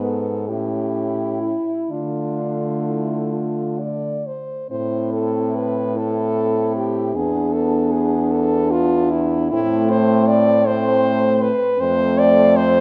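A warm French horn sings the melody up front with light vibrato and a soft attack in this elegiac, yearning classical fragment for horn quartet, cut from a longer piece and moving slowly in a rubato 6/8 at 41-54 BPM in dotted quarters. A mellow, distant second horn with light vibrato traces a second line in the background, a dark horn with a smooth top fills the accompaniment, and the lowest horn, also with light vibrato, carries the bass. The harmony settles from D minor into A minor at 4.7 s, and a moderate scoring-stage reverb lends the ensemble a roomy glow.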